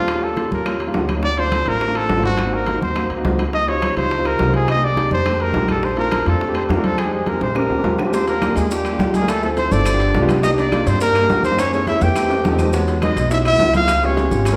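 A clear, up-front trumpet with light vibrato carries the melody in this sophisticated, danceable Afro-Cuban jazz cut in Bb major at a brisk 209 BPM, over a concert grand piano with audible action noise and long sustain, woody pizzicato upright bass, bright background congas, tight high-tuned bongos, ringing metal-shell timbales and very quiet claves, while a dark, breathy subtone tenor saxophone and grainy maracas join at 8.1 seconds, all set in the reverberant bloom of a recital hall.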